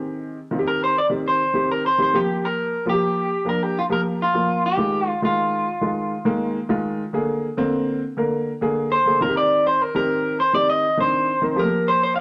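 Warm and uplifting, this soul excerpt in a straight 4/4 pairs a woody, slightly detuned upright piano accompaniment with a bright, twangy, slightly broken-up electric guitar played through a small old amp, which enters at 0.7 seconds to carry a picked solo melody up front over chords moving from Eb6 through Gm7, Fm7 and Bb7, all set in a moderate echo chamber reverb.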